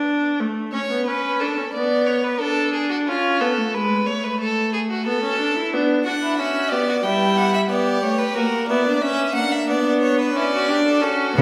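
A church-like recital hall lends this recording a long, wet reverb that lingers around the players. The piece is a solemn, serious baroque-style fugue for string quartet, heard as an extract from a longer work. A clear-toned viola opens the accompaniment, and a violin joins at 0.7 seconds with a second line above it. Both are bowed by single players, up front and smooth, with even vibrato. A second violin of the same clear quality takes the melody from 6.1 seconds, and all three voices weave through a sober minor-key progression. At 11.4 seconds a rich, intense cello sounds a single bass note, its bowed tone carrying vibrato and a smooth top.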